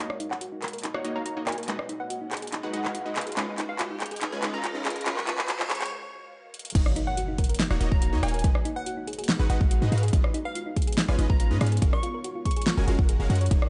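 A light-reverb, softly rolled-off mix frames this bright, lush future bass excerpt in F# major at 142 BPM with a half-time feel, where an ethereal pad in the background, a round, tine-like thumb-piano-like synth pluck playing arpeggios, a glassy wavetable pluck melody with 12-bit grit and digital delay, and a detuned supersaw stab riff ride sidechain pumping through a build-up of filter sweeps, a pop drum kit fill with fat snare and metallic hats, and a background riser before a break at 5.9 seconds, until the drop at 6.8 seconds brings in a deep, boomy 808-style bass and a punchy electronic kick, up front under the impact.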